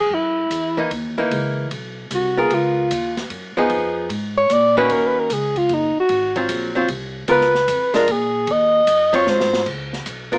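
A relaxed, swinging jazz waltz at 151 BPM in 3/4, with a 67% swing on the eighths, drives this short small-group bop excerpt in D-flat mixolydian, moving through chords like Gb6, Db13 and Ab13 before a drum fill at 9.3 seconds. Up front, a dark alto saxophone solos with vibrato, scooped notes and a smooth top, while a clean, compressed hollow-body archtop guitar comps from 0.8 seconds and a woody pizzicato upright bass plays underneath. The open acoustic drum kit, with dark cymbals, a medium-tuned snare and a boomy kick, sits low in a small room, and the whole recording has light reverb and a small-speaker sound.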